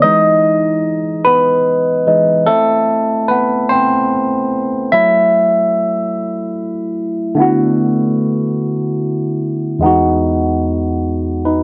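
This sensual, intimate R&B fragment in E major drifts at 49 BPM in a straight 6/8, carried entirely by a barky, lightly overdriven tine electric piano played through a combo amp with phaser, sitting up front across a range from E2 to E5 and moving through Emaj7, Amadd9 and F#m7 before shifting to D69 at 7.4 seconds and returning to Emaj7 at 9.8 seconds, all wrapped in a moderate plate reverb and a dark production tuned to A4 = 442 Hz.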